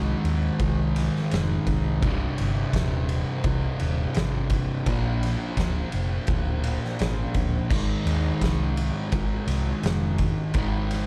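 A straight 4/4 pulse at 84 BPM drives this heavy, ominous stretch of stoner and doom metal, cut from a longer piece and lasting about 11 seconds. The oversized, low-tuned acoustic drum kit enters at 0.2 seconds with a boomy kick, fat snare, dark crash and ride cymbals, and a gritty, saturated sound that sits up front in a bright stone room that pumps. A double-tracked fuzz guitar, picked and distorted, carries the riff from C2 to Bb3 with a warm, up-front tone. Beneath it, a hollow-body short-scale fingered electric bass adds a round, punchy low end through tube saturation, reaching down to C1. The harmony moves from Ab to Cm, then Bb and back to Ab, all wrapped in a dark, warm production with a small room ambience.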